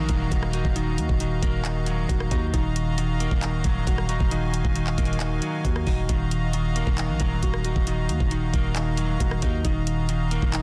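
Hard-hitting and eerie, this half-time trap excerpt rests on a single Ebmadd9 chord, with a knocking, up-front trap kit of handclaps, bright hats, kick and rim clicks, plus soft clipping on the snare, alongside a growling, buzzy 808-style bass. A slightly broken-up electric guitar plays filtered accompaniment, a reedy, sweet accordion holds close-miked sustained chords with light tremolo tuning, and muted, felt-like synth keys spin dark arpeggios through chorus and delay. A very quiet electronic downlifter sounds over the first 2.5 seconds, all within a dry, dense, heavily limited mix.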